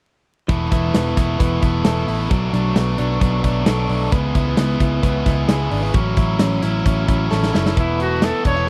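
A big, up-front rock drum kit leads this nostalgic, bright slice of jangly indie pop at 132 BPM in a straight 4/4, with a punchy kick, a medium-tuned snare and hi-hat ringing in a big room. Beneath it, a vintage muted electric bass sits dark and round, its foam-muted, amped tone giving each picked note a firm thump. Two electric guitars fill out the middle: a biting overdriven part picks the accompaniment with a warm edge, while a clean, direct-recorded guitar spins compressed, sparkling arpeggios above it. The harmony moves through Esus4, Bm7, C#m7 and A6 before a drum fill at 7.3 seconds leads back to Esus4. At 7.8 seconds a clear solo trumpet enters with a light vibrato, just as this fragment of a longer piece breaks off. The dry, close sound of a 1970s-style studio, dusted with vinyl crackle, adds to the vintage mood.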